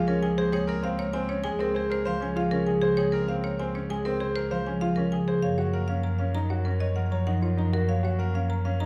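A straight 4/4 pulse at 98 BPM drives this hypnotic, propulsive stretch of minimalist classical pattern music, cut from a longer piece, that moves from a Db6 chord in Db major to F#maj7 in F# major at 5.4 s. A bright, woody marimba with hard mallets carries the melody over the ringing, fingerpicked harp accompaniment and clear, boxy piano arpeggios, while a rich, bowed cello with smooth vibrato holds the bass up front. At 5.4 s a dark, soft-attacked French horn enters in the background with a second line, all heard from further back in a large studio with moderate reverb.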